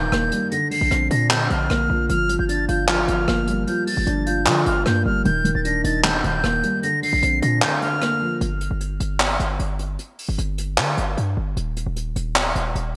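A pure, straight-toned concert flute melody with delay floats high over a dark, boxy grand piano and a punchy, heavy 808-style bass, opening this menacing half-time trap excerpt as a brushed acoustic kit with handclaps, hi-hat and rim clicks joins up front. The harmony moves through Ebmaj7, Bbadd9 and Gm7, and the kick drops out briefly at 7.6 s. At 8.4 s the flute and mellow piano stop, leaving a break of decaying sine-tone bass and brushes over a G5 chord, all set in light small-room reverb with a bright 1980s-style digital sheen.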